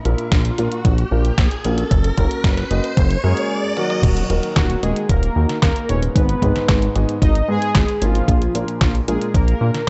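Danceable, melodramatic italo disco opens with dark, boxy baby grand piano stabs steeped in shimmer reverb, as an electronic riser runs through the first 4.0 seconds. Beneath them, a glossy, chorused synth bass with a plucky pulse-and-sawtooth tone sits up front alongside a thumpy, overdriven electronic kick and a detuned 8-bit drum machine with a fat snare, handclaps, hi-hats, toms and crash cymbal, both sounding as if re-recorded in a small room. At 3.2 seconds a bold, fat analog synth brass melody enters with chorus, vibrato, shimmer reverb and analog delay, shortly before a drum fill at 3.8 seconds, all within a dry, gritty hardware recording with a dulled top end.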